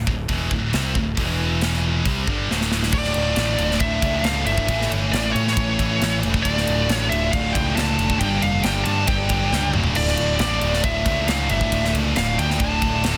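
A straight 4/4 pulse at 136 BPM drives this relentless, heavy metal excerpt in D harmonic minor, where a tight, polished drum kit with bright cymbals and a punchy picked bass push under three distorted rhythm guitars, two high-gain and one sludgy and double-tracked, sitting back in the mix playing riffs. At 2.9 seconds, after a drum fill, a bright high-gain lead guitar takes the melody in its upper range while a very quiet, smooth studio string section holds sustained chords beneath, moving through D minor, A and G minor. The sound is dry, dense and heavily limited, with a second drum fill around 9.5 seconds.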